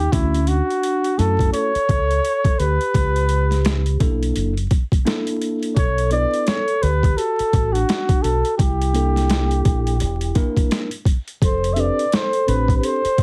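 The recording has a heavily compressed, radio-like sound with vinyl crackle and light reverb, in a short jazz-hop cut from a longer piece with a cool, warm mood and a swung sixteenth-note feel. Up front, a mellow flugelhorn carries the solo melody in a jazz style, with vibrato, a soft attack and a smooth top, trailed by a slapback echo. A deep dub fingered electric bass sits dark, round and prominent beneath it. A boom bap sampler-style kit, pitched down, gritty and overdriven, pairs a thumpy kick with a high-tuned snare and hi-hat. A worn, slightly out-of-tune tine electric piano adds clean, direct chords from 0.1 seconds, while a vibraphone with soft mallets rings in the background with a slow motor vibrato and a vintage, band-limited metallic tone. The harmony moves through extended jazz chords, from Dmaj9 through C#m7b5, F#7alt and Bm7 to C13 and F6.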